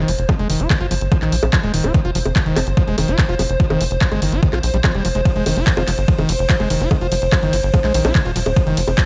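A straight 4/4 pulse at 145 BPM drives this alien, psychedelic trance excerpt in F minor, tuned to A4 = 444 Hz and resting on an F5 chord, with a punchy, overdriven electronic kick entering at 0.3 s up front in a large-room reverb alongside a layered, overdriven dance kit of bongos, handclaps, hi-hat and ride cymbal. Underneath, a tight, nasal sequencer bass drives low and up front while a squelchy, resonant acid bass riff with filter sweeps and tape echo pumps against the kick. Above it all, a morphing, detuned wavetable pad holds sustained chords with chorus and its own reverb, warbling brightly in the same sidechain pumping, all in a light reverb.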